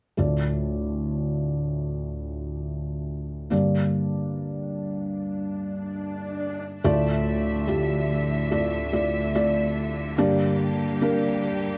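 In a straight 4/4 at 72 BPM, this melancholic pop ballad in D minor, cut from a longer piece, opens on a felt-muted upright piano playing intimate, mellow chords between Dmadd9 and Gm with audible action noise up front, an electronic swell sound effect appears from 4.9 to 6.8 seconds, and at 6.8 seconds a rich studio string section enters with smooth, bowed sustained chords touched with vibrato, all set in a dark, moderately ambient studio sound.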